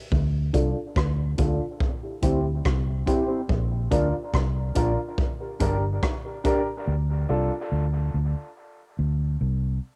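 Dub reggae in a spacious, meditative mood, built on a dark, round, foam-muted electric bass that plays on after the punchy, small-room vintage drum kit with hi-hat, kick and rim click stops at 6.7 s, while a mellow, clean electric guitar sits in the background and a woody upright piano with audible action noise adds stabs, both carrying dub echo and a low-pass filter under a filter sweep across the whole cassette-recorded excerpt, with chords moving from Dm through C, Bb and Gm back to Dm and Csus2.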